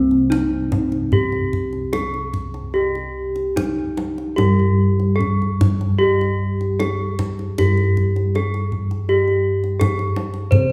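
A bronze metallophone with a ringing, airy tone and bossed gongs with a round, beating sound open this shimmering, stately Javanese gamelan excerpt in C pelog at 74-87 BPM in a straight 4/4, the metallophone carrying the melody and the gongs the bass line, joined at 0.1 s by a deep, close and dry kendang, all three up front in a reverberant recital hall.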